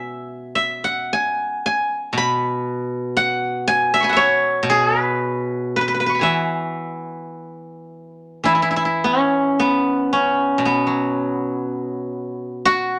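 A steel-string zither, plucked with fingerpicks, carries this Chinese traditional solo from start to finish, its silvery, ringing tone sitting up front in light reverb across a range from B2 to C#6. The mood is elegant and pastoral, moving in a free rubato around 53-61 BPM in 2/4 and set in the E gong mode. Cut from a longer piece, the 13-second passage opens one section and shifts to a new one at 8.5 seconds.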